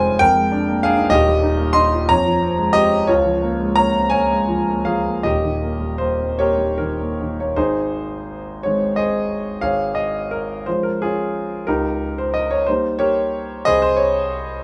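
Warm and passionate, this brief romantic character piece for solo piano unfolds in a lilting 6/8 with a freely breathing rubato feel. The grand piano carries everything on its own for the full 14.6 seconds, sitting up front with a present tone and long sustain that lets each chord ring. Its range stretches from deep Eb1 in the bass up to C6, giving the writing a rich, full-bodied span. The opening phrase moves through Bb7/F, Eb, Fm and Bbm7/Db before settling on Eb, and at 7.6 seconds a second section begins on Ab, passing through Db/Ab and Eb7/Db before arriving on Ab/C. A moderate studio reverb adds a gentle halo around the instrument, and the passage is cut from a longer piece.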